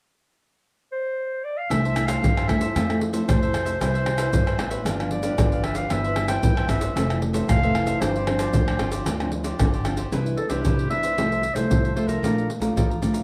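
Samba and choro in a joyful, festive mood, where a distant, roomy clarinet carries the melody alone from 0.9 s before a woody pizzicato upright bass, a crisp picked cavaquinho set in the background, a small thumb-plucked nylon-string guitar, and up-front percussion of tube shaker, deep surdo, pandeiro and tamborim join at 1.7 s, with the clarinet, cavaquinho and guitar carrying a cassette-tape color in a modest home-recorded room.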